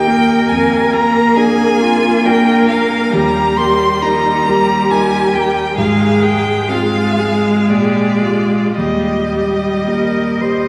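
A slow, tender romantic movement for piano quartet in Eb major opens with all four players together: a clear, focused violin sings the lyrical melody up front with vibrato, a rich, expressive cello carries a second line with portamento, and a bowed viola adds accompaniment alongside a dark, mellow grand piano. The 3/4 pulse moves with rubato between 54 and 71 BPM as the harmony settles from Bb7/F onto Eb at 3.1 seconds and again at 8.8 seconds. A long cathedral reverb from a church or concert hall surrounds the ensemble, and vinyl crackle lends an aged quality to this fragment of a longer piece.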